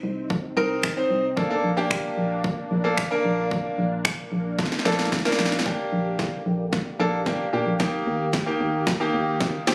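Captured on a phone in the room, this short cut from a longer dance-pop track carries a light studio reverb and compression. The mood is euphoric and summery, in a straight, steady four. A filtered supersaw swell of detuned sawtooth voices sits in the background with a soft attack, its sustained chords evolving under a moving notch and pumping against the sidechain. Beneath it, a dark, hollow FM bass with an organ-like, percussive bite and quick decay pumps the same way. The punchy analog drum machine arrives up front at 0.3 seconds with overdriven kick, snare and finger snaps, and a bright, brilliant grand piano joins the accompaniment shortly after, natural and forward. The harmony moves from Cm7 to Bbmaj7, and a drum fill starts at 4.6 seconds; from 5.7 seconds the chords shift to Bb6 and then Eb as the fill carries on into a build-up that runs to the end.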